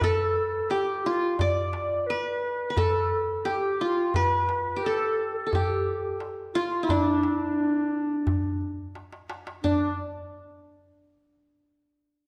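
Longing and hypnotic, this passage, cut from a longer Turkish makam ensemble piece, moves at a straight 87 BPM in 4/4 in D makam huseyni, tuned to A4 = 441 Hz. Up front, a bright-edged, plectrum-plucked qanun with triple strings carries the melody. A mellow, distant clarinet in classical style traces a second line, and a crisp, deep metal-shell darbuka, played with hard hands, sits close and dry. A darbuka fill from 9.0 to 9.6 s leads into a new section at 9.6 s, heard in a moderate recital hall ambience.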